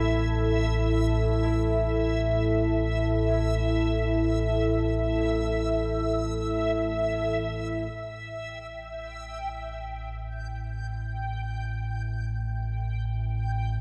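From the first moment, a deep, ominous drone rumbles low under a dark analog pad holding an A5 chord, setting a desolate, unsettling mood in free time. The drone is detuned and wave-folded, with its own reverb, while the moody, sub-octave pad carries chorus and sits up front alongside it. Above them, a reversed, granular texture with a soft attack and long release adds a dreamy, swelling shimmer high in the register. A very quiet baby grand piano plays brilliant, worn arpeggios on E4 until it stops at 8.0 s, just as the music moves into a new section at 7.9 s. The whole mix is soaked in a lush hall reverb with a cassette-tape haze, and this short piece is cut from a longer work, ending at 13.8 s.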